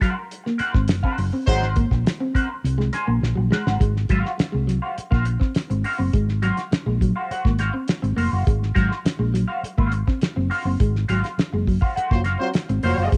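Playful and funky, this straight-feel excerpt, cut from a longer piece, sets a twangy, picked clean electric guitar accompaniment run through wah and analog chorus against a darker picked clean guitar riff, a cloth-damped, thuddy drum kit with a fat snare and tight kick sitting dry and up front, and a round, hollow-body short-scale fingered bass that enters at 0.6 seconds, while a tight, smooth-topped horn section adds a brief second line at 1.5 seconds and returns at 12.1 seconds, all amid band accents, a drum fill and a shift from an Ab9 to an Ab13 chord inside a small-room home recording with cassette-tape colour on the guitars, drums and horns.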